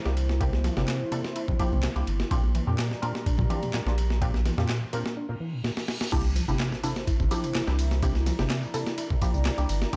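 A moody, detuned analog pad with sidechain pumping and a muted, phaser-washed dub chord stab open this energetic, playful breakbeat excerpt at 126 BPM in C mixolydian. They are soon joined by a thick, tube-saturated sub bass and a gritty, compressed sampler-style break with a thumpy kick up front, along with a rubbery, resonant acid bass riff carrying filter sweeps and delay. Bright, high-tuned congas sit distant in the background until 5.0 s and a layered electronic house kit adds handclaps, ride and tambourine, while a background reverse cymbal leads from a break and drum fill into an impact as the drop lands at 6.1 s on C7, all set in a dark digital ambience.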